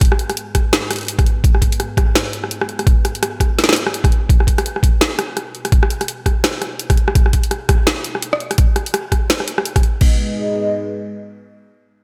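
A lightly reverberant, heavy and cinematic mix opens this half-time drum and bass excerpt at 168 BPM in G# minor, with an up-front, gritty, pitched-down electronic kick and a layered, produced kit of woody snare, bright hi-hats, rim clicks and crash cymbal that carries a small-room character. Beneath them, a deep, moody analog pad of detuned sawtooth and triangle tones with a sub octave holds slow-attack chords from G#m to B, colored by chorus, phaser, sidechain pumping and a filter sweep. The drums drop out at 10.1 seconds, leaving the pad alone on G#m until the cut at 11.4 seconds.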